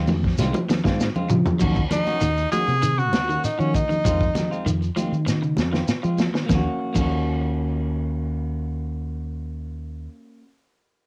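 A light reverb and the soft grain of a home cassette recording frame this short, hypnotic and intense afrobeat fragment in Eb dorian, moving at 98 BPM in a straight 4/4. A round, dark fingered electric bass with tube saturation sits up front, while a crunchy breakbeat kit, gritty and saturated with dark cymbals, a tight kick and a rolled-off top, drives alongside it and plays fills from 0.4 to 1.6 seconds and again later. Bright, high-tuned congas sound distant in a large room, and a grainy, mellow shekere stays close and dry. A twangy, slightly broken-up guitar picks arpeggios through tape echo in the background, and a clean, picked electric guitar adds stabs that carry on to 10.5 seconds. An edgy tenor saxophone with light vibrato steps forward for a brief solo from 1.9 to 4.6 seconds, over chords that shift between Fm7 and Ebm7.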